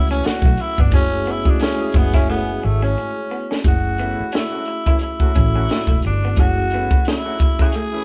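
A swung 16th-note groove at 88 BPM in 4/4 sets a smooth, late-night neo-soul and R&B mood in F# minor, carried by a compact cocktail drum kit up front with a dry, high-tuned snare and punchy kick, and a dark, round, foam-muted fingered electric bass that stops at 6.9 seconds. A raspy, gritty tenor saxophone with scooped notes and vibrato solos over the first 3.6 seconds, a drum fill arrives at 2.3 seconds, and the harmony moves from B9sus4 to F#m9. Beneath, a clean tine electric piano with medium tremolo plays accompaniment through a combo amp, a slightly broken-up, lo-fi electric guitar adds a second line in the background, and a distant, roomy horn section punctuates with tight octave-doubled stabs, the band sounding live in one room with light reverb in this passage from a longer piece.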